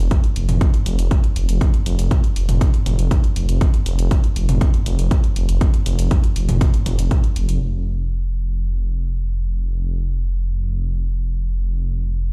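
Melancholic and dramatic, this melodic techno excerpt moves at 120 BPM in a straight 4/4, cut from a longer piece. A dark, detuned saw bass sits up front from the start, deep and rumbling with a beating, saturated sawtooth edge blended with sine, a fast attack and sustained notes down around F1, pumping under sidechain. A heavy, layered electronic kick drum joins at 0.1 seconds, placed up front with a tape-warm, produced character. A techno drum kit of hi-hats and toms, with warm hats and a small-room re-recorded feel, sits further back beneath it. The kick drops out at 7.2 seconds and the kit at 7.6 seconds, leaving the bass alone until 12.3 seconds. The mix is dry on the parts yet heard through a big sound system in a bare room, with a large studio reverb around the whole.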